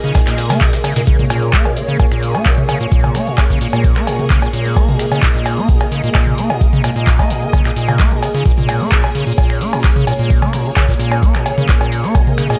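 Dry and close, with little reverb, this gritty, trippy acid house fragment at 130 BPM in Bb minor sits on a single Bbm7 chord for its 12.6 seconds. An overdriven electronic kick drum, deep and up front, anchors the straight 4/4 pulse. A booming analog drum machine, also overdriven and close, adds metallic hats, cabasa, cowbell, finger snaps, handclaps and toms. Beneath it, a very quiet, compressed sampler-style soul kit, re-recorded in a large room, contributes a fat snare and hi-hat. The square-wave acid bass riff is squelchy and hollow, with a resonant filter sweep, overdrive, tape echo and sidechain pumping. Over it all, a lush vintage string machine holds soft-attack sawtooth chords with a sub octave, colored by phaser, ensemble chorus and its own sidechain pumping.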